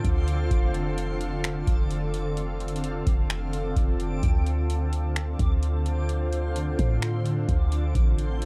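A booming analog drum machine sits up front in this ethereal, hazy half-time cloud-rap excerpt, its deep kick, metallic hi-hats and finger snaps running through the full 8.5 seconds. Beneath it, a clean, sine-toned 808-style bass has a fast attack and mellow decay. A blurred, granular cloud pad holds sustained chords through its own reverb and sidechain pumping, moving from Dm7 and F6 to a closing Am7, while a faint reversed, detuned texture drifts high above, all within a dark, mostly dry production.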